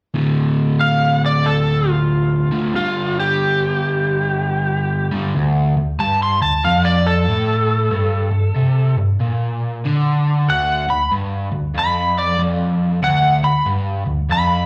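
An overdriven slide guitar, played with fingerpicks, carries the melody up front from 0.8 seconds, its high, gritty lines wrapped in plate reverb and a slapback echo. Beneath it, a crunchy, double-tracked electric guitar picks a low riff from the very start, sitting just as far forward in the mix. This is raunchy, swaggering rock in 4/4 with a loose swing on the eighth notes, moving between D5 and G5 chords before landing on a Dm6 at 10.5 seconds. The sound is that of a live gig heard through the venue's PA, wrapped in a moderate club reverb. Cut from a longer piece, the passage shifts into a second section at 5.3 seconds as both guitars carry on to the end.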